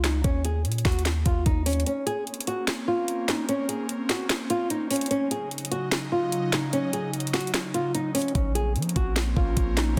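Eerie and menacing, this short excerpt from a longer hip hop track sits in trap territory at 148 BPM with a half-time feel in Bb minor. A dark, thumb-plucked flamenco guitar carries the melody up front throughout, its acoustic tone trailed by tape echo. An electronic trap kit, also up front, runs the length of the excerpt with a knocking kick, sharp snare, metallic hats and handclaps. The deep, boomy 808-style bass drops out for a break from 1.9 to 8.4 seconds, then returns with a fast attack and decaying, mellow low end. An airy, breathy pad with a soft, evolving, detuned character and chorus enters at 2.2 seconds, holding sustained chords that move from Bbmadd9 to Ebm7 and back. The mix has light reverb and a dense, heavily limited modern master.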